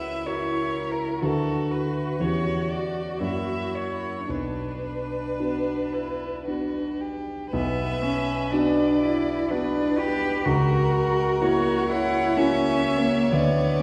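In a slow, rubato 3/4 at around 54-64 BPM, this classical movement for piano quartet unfolds with an elegiac, solemn tread in B minor, tuned to A4 = 445 Hz. A bowed violin carries the melody between A4 and F#5, its tone focused and full of vibrato though set somewhat distant, while a second violin and a cello shape supporting lines in a smooth, even manner, the strings sharing a rich body. The grand piano sits up front with a natural, warm accompaniment spanning B1 to B4, and the four players sound together throughout the 13.8 seconds. The harmony moves from F#7/C# through Bm/D and C#dim/E to F#7 and Bm, and the opening section begins again at 7.5 seconds. A wet concert hall reverb places the ensemble further back in the room, lending this fragment of a longer piece a spacious, mournful glow.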